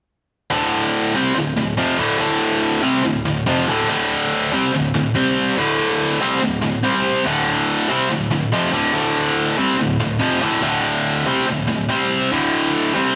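Driving straight 4/4 rock at 142 BPM opens this anthemic, energetic clip from a longer piece, where a bright, picked, double-tracked electric guitar with high-gain distortion and digital delay sits up front from 0.5 to 13.2 seconds, moving between D5 and C5 chords across a range of D2 to C4 in a moderate studio reverb that gives the feel of a band playing live in one room.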